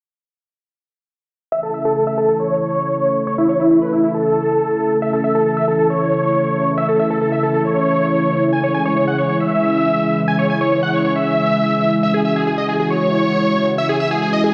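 Trance with a bittersweet, driving mood, cut from a longer piece, where a huge, euphoric supersaw lead carries the melody from 1.5 s over a lush, thick unison pad holding sustained chords that move from A to C#m at 8.5 s. The detuned lead sits up front with a noise layer, a low-pass filter and dub echo, while the slow-attack pad shimmers with chorus, and both parts carry filter sweeps through the passage. A wet recital hall reverb wraps the sound, which plays through a big sound system in a bare stone room.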